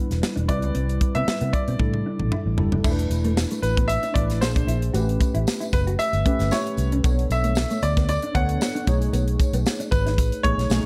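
Polished 1980s jazz-funk pop in B minor, this urban, bittersweet excerpt moves at 114 BPM in 4/4 with a light 16th-note swing. A tight funk drum kit, dry and up front with a tight kick and medium-tuned snare, anchors the groove alongside a vintage muted fingered electric bass that sounds round, punchy and foam-muted. A worn, slightly out-of-tune tine electric piano, lightly overdriven through a combo amp with analog chorus, supplies the accompaniment, while a mellow, compressed electric guitar riff with ensemble chorus sits in the background. A clear grand piano carries the melody from 0.5 seconds over sophisticated chords such as Cmaj7, E7sus4, A#9 and Bm9, and a drum fill at 1.8 seconds leads into a new section where a jingly tambourine joins at 2.9 seconds. The production is dark and warm, with a studio ambience around the band.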